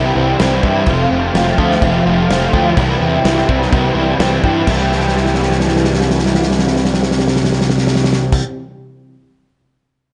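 Blissful and dreamy, this short cut from a longer rock piece sits between shoegaze and dream pop, moving in a straight 4/4 feel. A crunchy, double-tracked electric guitar carries the riff up front, its overdriven picking coloured by analog chorus, while a fuzzy, picked electric bass with added overdrive anchors the low end beneath it. A loose indie drum kit joins at 0.4 seconds, its small-room sound built from a medium-tuned snare, a tight kick and crash cymbals, with a rolled-off top keeping it warm yet close. The harmony moves from C to F and back to C, and in the second half the drums play a long fill from 4.9 to 8.3 seconds. The whole mix is soaked in a wet plate reverb with a hazy, darkened high end that gives it a floating, cushioned glow.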